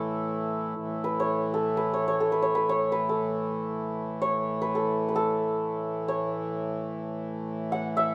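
Meditative and devotional, this brief Hindustani classical excerpt unfolds in free time in raga Bhupali on A, with a bright, shimmering hammered santur carrying the melody from A4 to F#5 throughout its 8.1 seconds. Beneath it, a hand-pumped harmonium holds a reedy, breathing drone between A2 and E3, both instruments sitting up front. A wet recital-hall reverb lets the santur's ringing notes hang in the air.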